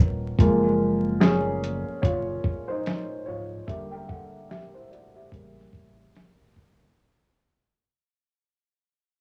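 A soft, felt-muted upright piano leads this reflective, hazy lo-fi hip hop excerpt at 73 BPM, its mellow, intimate tone sitting up front and filtered over F#maj9, Em7b5 and A7b9 chords as the passage fades out. A round, deep sine sub bass holds sustained notes underneath, while a gritty, compressed sampler-style drum kit enters at 0.4 seconds with a thumpy kick, medium-tuned snare and hi-hat in a swung 4/4 groove. Cassette recording, vinyl crackle and a small-room ambience give the whole recording a dusty, home-made feel.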